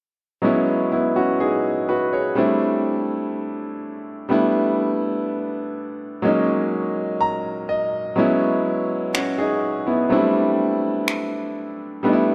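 A moderate concert hall reverb surrounds this short clip of moody, longing contemporary R&B at a slow 62 BPM in 4/4, with lossy compression artefacts in the sound. An up-front concert grand piano, clear and smooth with a vintage tone and deep bass, carries the accompaniment throughout on suspended ninth chords, adding a fill at 6.7 seconds. Electronic finger snaps with a produced, small-room character enter up front at 9.1 seconds.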